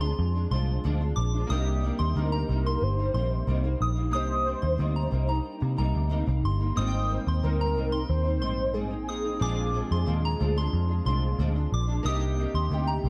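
A round, punchy, foam-muted picked electric bass sits up front in this laid-back, sunny bedroom-pop excerpt at 91 BPM, with a dark fingerpicked nylon-string guitar carrying ensemble chorus and vibrato, glossy retro pulse-width synth keys run through cassette tape, a velvety detuned sawtooth lead melody, and a pure FM bell line treated with phaser and tape echo, all moving through Bb7, Cm7 and Abmaj7 inside a digital ambience.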